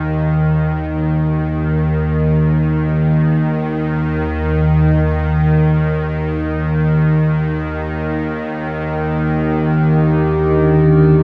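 Dark ambient drone in free time, unsettling and ominous, this excerpt opens with an up-front, string-like bowed drone, tense and wave-folded with vibrato, which moves to Gm/Eb at 8.6 s before a metallic, inharmonic, eerie drone enters at 9.1 s and a deep, warbling, detuned pad with chorus arrives at 10.5 s, all washed in a huge, wet reverb.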